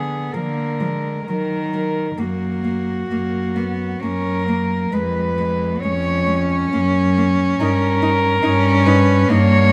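Elegiac and melancholic, this short fragment of a lyrical classical piece for cello ensemble moves at 66 BPM in a rubato 3/4, with four bowed cellos playing sul tasto throughout. Up front, the high melody cello sounds pure and floating yet distant, the bass cello carries a soft attack and light vibrato, and a second line with a smooth top enters at 0.3 seconds. Further back, an intimate accompanying cello with an airy bow sits in the background, all within a moderate concert hall reverb captured by close, detailed microphones.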